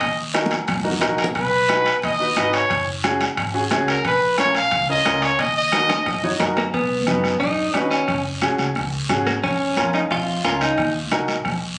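Danceable and passionate, this cumbia excerpt opens with a bright, up-front trumpet solo with light vibrato. Beneath it sit a bright, long-sustaining upright piano, a woody pizzicato upright bass, a soft-beater bombo, a raspy guiro, damped high-tuned congas in the background and very quiet ringing timbales, while drum fills punctuate the passage. At 6.6 s the trumpet and timbales drop out and a clean, compressed electric guitar takes the melody, bathed in spring reverb, while the whole band is heard through a phone in a lively club room.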